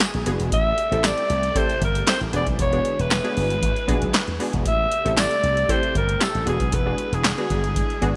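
A growling alto saxophone leads up front with raspy, gritty vibrato and a touch of delay, carrying the melody over a funky, late-night slice of early-eighties boogie funk at 116 BPM, moving between E7 and Am7. Beneath it, a dry electro analog drum machine with a deep kick, punchy snare, metallic hats and handclaps drives the groove alongside a growly slap bass through an envelope filter, while a nasal, detuned polysynth comps with a fast filter pluck from 0.3 seconds. Shimmering string-machine violins and a jingly tambourine sit in the background, all set in a lush hall reverb with bright 1980s-style digital sheen.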